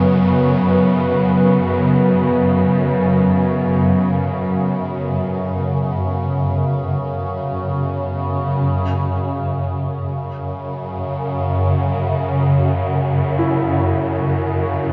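Dark ambient drone in free time, vast and ominous, cut from a longer piece. A swarming drone holds the low register from the start to the close, bright and up front, its detuned sine layers evolving tensely with a granular grain and its own built-in reverb. Above it, a deep, moody analog pad sustains sawtooth and triangle chords with a sub octave, thickened by chorus and a shimmer reverb, and falls silent at 8.7 seconds. The harmony moves from B5/F# to F#5, and after the pad is gone the drone carries on by itself. At 13.4 seconds a warm grand piano enters quietly with arpeggios on E4, blurred by a diffuse ambient delay, and the whole piece sits in a long, wet cathedral reverb.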